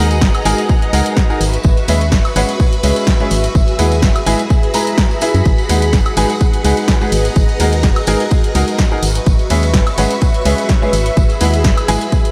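A lightly reverberant piano house excerpt at 126 BPM with a gentle 16th-note swing, soulful and bittersweet, where a punchy, tape-warm, up-front electronic kick and a dark, hollow organ-like FM bass anchor a bright, worn grand piano riff with delay, shimmering vintage string-machine violin chords, a cloudy granular pad in the background, a tape-warm analog drum machine of hi-hat, ride, snare and woodblock, and a band-limited tambourine with shaker and handclap, the bass, piano, strings and pad all pumping to the sidechain over chords moving from Bmaj13/F# through C#m7, F#9sus4 and G#m7.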